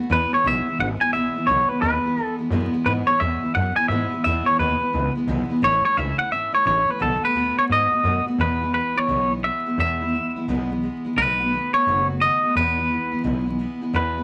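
Vinyl crackle and a moderate studio reverb frame this upbeat, rowdy rockabilly fragment in E major, which swings at 173 BPM and moves through E, A and B7. A clean, compressed, twangy electric guitar carries the melody up front, while a jumbo steel-string acoustic guitar with fresh strings adds full-bodied, bright picked accompaniment, complete with audible finger squeak. Underneath, a woody, dark upright bass plucked pizzicato gives a thumpy pulse, and the tune shifts into a new section at 8.4 seconds.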